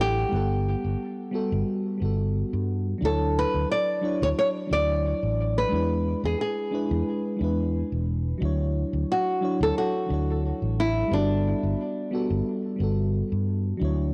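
A nylon-string guitar, a mellow FM electric piano and a fretless electric bass all sound together from the first moment of this blissful, warm sunset chillout piece in a straight, unhurried 4/4. The fingerpicked guitar carries the melody with a small, dark acoustic tone, touched by analog delay, and it falls away at 12.1 seconds. Underneath, the electric piano supplies a soft, round, full-bodied accompaniment with a fast attack, a decaying tail, a faint noise layer, chorus and analog delay. The fretless bass sits up front with an amped, rounded low end. The harmony drifts through Gmaj9, Dmaj9 and E7 before settling back on Gmaj9 near 11.1 seconds. Light studio reverb and a dry, gritty cassette-tape character colour this short passage cut from a longer piece.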